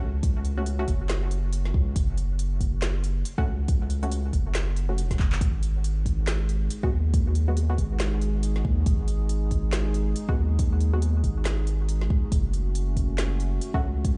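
Meditative and cavernous, this deep dubstep excerpt moves at 139 BPM in a swung half-time feel, with a thick, saturated sub bass up front and a deep layered electronic kick anchoring a deep house kit of woody snare, smooth hats and handclaps (with a drum fill at 5.2 seconds), while muted, detuned dub chord stabs with chorus and dub echo flicker until 11.0 seconds and return briefly at 13.7 seconds, a dark, moody analog pad with chorus and a moving notch enters at 6.0 seconds, and the whole sounds as if played on a big sound system in a bare room, bathed in large studio reverb and rolled off above 10.5 kHz.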